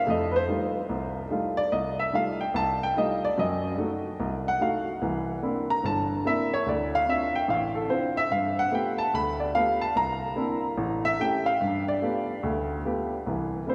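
A warm baby grand piano plays alone and up front, its natural tone ranging from deep bass to bright upper notes in a playful solo jazz passage at 146 BPM in 4/4 with a swung eighth-note feel. The harmony moves through rich chords such as F9, F#dim7, C9, Dm7, G9 and A7 across roughly 13 seconds, cut from a longer piece. A lush cathedral reverb with a 4.6-second tail surrounds the piano, giving it the spacious ring of a church or concert hall.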